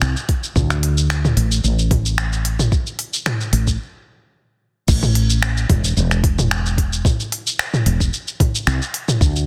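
A round, punchy fretless electric bass with a woody, hollow-body tone and sidechain pumping carries the low end of this warm, hypnotic organic downtempo piece in A minor at 111 BPM with a light 16th-note swing, set against an up-front organic electronic kit of crisp hats, finger snaps, shaker, toms and crash with studio reverb and a softly clipped snare, plus a soft, tape-tinged electronic kick, before the groove stops from 3.8 to 4.9 seconds and returns in a new section of a dense, heavily limited mix.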